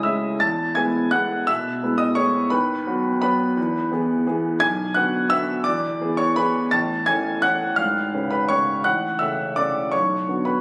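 A solo grand piano opens this elegant, wistful classical waltz at 170 BPM in 3/4, its uneven beats and rubato giving the phrasing a breathing, hesitant lilt as the harmony moves from E and B/D# toward F# minor, which settles in from 4.6 s. The piano sounds clear, intimate and up front, with long sustain and audible action noise, its range stretching from deep bass notes to bright high ones. A wet recital hall reverb, captured on a phone in the room, surrounds this brief passage cut from a longer piece.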